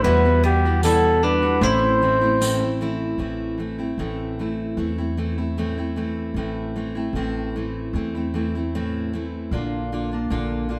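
A wet stone-room reverb surrounds this haunting, wistful acoustic folk excerpt, played live by a small band at 76 BPM in A dorian: a punchy, classical-style flugelhorn carries the melody up front, a bright, double-strung bowl-back mandolin picks a second line, and a close, jingly tambourine joins briefly, until horn and mandolin stop at 2.8 s, leaving the woody, old-stringed dreadnought guitar and the dark, growly pizzicato upright bass to continue toward a Bb chord at 9.5 s.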